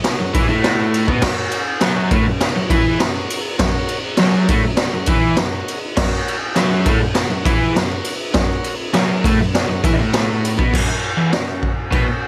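A straight 4/4 garage rock beat pounds from a raw, up-front acoustic kit with a boomy kick, a high-tuned snare, and crash and ride cymbals, its gritty, saturated sound rolled off at the top, while a bright, double-tracked overdriven electric guitar drives a crunchy picked riff. In the background, a buzzy vintage combo organ plays a short fill between 0.3 and 1.2 seconds and holds sustained chords with light vibrato. This swaggering, rowdy cut from a longer piece is recorded dry with little reverb and moves into a new section at 10.7 seconds.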